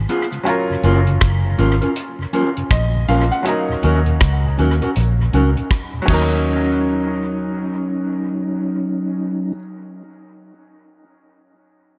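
A clear, short-sustaining baby grand piano with dub echo and a round, foam-muted fingered electric bass open this bittersweet lovers rock reggae excerpt in Eb minor at 80 BPM, swung on the 16ths. They are joined at once by a flute-like tonewheel organ with chorus vibrato, key click, slow rotary speaker and dub echo, clean fingered electric guitar stabs in spring reverb, and a dry, tight, up-front 70s drum kit whose dark cymbals, hi-hat, kick and rim clicks carry dub echo. The longing harmony moves from Gbmaj7 to Ebm7 in a small, lightly reverberant room; the drums drop out at 6.3 seconds, and the piano plays alone from 9.6 seconds until 12.0 seconds.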